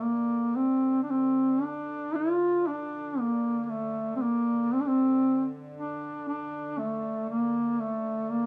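Caucasian folk lament in D minor at a rubato 58 BPM, longing and mournful, where a mellow solo duduk sits up front singing its melody with vibrato and scooped notes, over a rich, floating chamber string drone on D3 bowed sul tasto with a soft attack, all heard through studio reverb and the tape haze of a home cassette recording, in an 8.5-second fragment cut from a longer piece.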